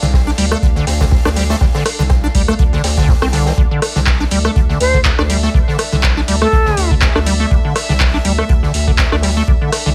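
Acid house with a gritty, driving swing, cut from a longer piece, where a squelchy, resonant square-wave acid bass riff with tube saturation, chorus and dub echo rides over a thick sine sub bass with sidechain pumping and a dry, deep electronic kick, while an up-front analog drum machine with metallic hats, handclaps and rim clicks sits ahead of a high-tuned acoustic jazz kit in the background, a clear, floating string section fades in beneath, and a breathy, bright flute with dub echo briefly appears from 4.8 to 6.9 seconds in a light reverb.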